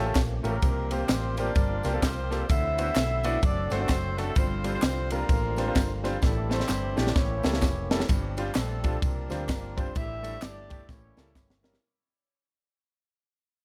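Uptempo gospel at 129 BPM with a fervent, soulful swing, cut from a longer piece, where a tight horn section carries the melody with octave doubling and tape echo from 0.5 seconds over a brilliant concert grand piano, a fat tonewheel organ holding very quiet chords through a slow rotary speaker, a dark, round hollow-body bass up front, a crisp drum kit with a punchy kick and high-tuned snare that fills at 6.2 and 10.9 seconds, and group handclaps, tambourine and maracas in the background, all in light reverb before fading out from 8.1 seconds.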